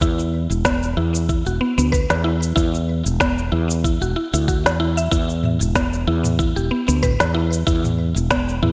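Organic downtempo with a mystical, lightly swung feel, cut from a longer piece, where a bright FM mallet-like synth pluck plays up-front arpeggios through chorus, cassette-tape colour and digital delay; a growly, round fretless electric bass pumps against a gritty, thumpy electronic kick; and an organic electronic drum kit of shaker, woody snare and toms sits in gated reverb, all within a lush hall and bright 1980s-style digital production.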